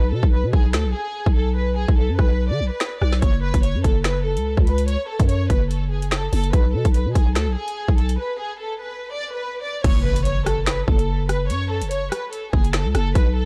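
A growling, buzzy 808-style bass sits up front in this ominous, cold drill piece, its fast attack decaying under a half-time feel at 145 BPM in F# minor. The electronic drum kit hits hard beside it, with a hard-clipped kick, woody snare, metallic hats, finger snaps, rim clicks and a crash cymbal. Above the low end, a studio violin section carries the melody with a bowed, vibrato-rich tone, soft attacks and a touch of delay, set further back in the mix. The harmony shifts between open, chordless stretches and F# minor, with breaks early on and just before the second section arrives at 9.8 seconds. An electronic impact then sounds in the background from 9.9 seconds, and a dark digital ambience hangs over this passage cut from a longer track.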